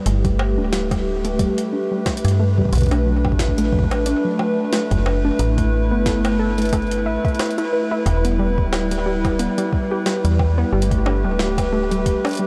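IDM at 90 BPM in 4/4 with a light swing on the sixteenths, this melancholic, glitchy fragment of a longer piece drifts through a dreamy mix soaked in a huge ambient reverb. A hollow, flute-like pad sits up front with sustained chords, its chorus and vintage 12-bit sampler grit lending a dark, detuned softness, while a warbly, dusty pluck spins arpeggios through chorus and tape echo with a lo-fi, evolving character. Underneath, a metallic FM bass with a fast attack and mellow decay holds the low end up front. A sampler-style jungle kit of bongos, hi-hat and a medium-tuned snare sounds pitched up, compressed and gritty, sitting well back in the mix with small room ambience and tape echo, and a soft, overdriven electronic kick re-recorded in a small room anchors the beat. The harmony moves from Gadd9 through Bm7, Asus2 and Em before returning to Gadd9 at 10.7 seconds.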